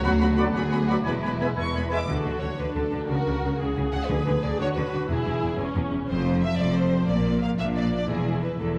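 Cinematic orchestral music in 6/8 at 119 BPM, soaring and triumphant, cut from a longer piece: dark, woody violins carry the melody over warm, expressive second violins, distant violas, rich cellos and woody double basses, all lush with vibrato, while a ringing harp plays arpeggios in the background. In the opening two seconds, a clear, vintage-toned oboe, an airy flute and a very quiet clarinet add second lines, as very quiet horns and trombones hold chords and distant, roomy trumpets punch in stabs. Hard-mallet timpani sound at 4.1 seconds, close and dry against the wet concert-hall reverb, as the harmony moves from B minor through E to unexpected F and B-flat chords.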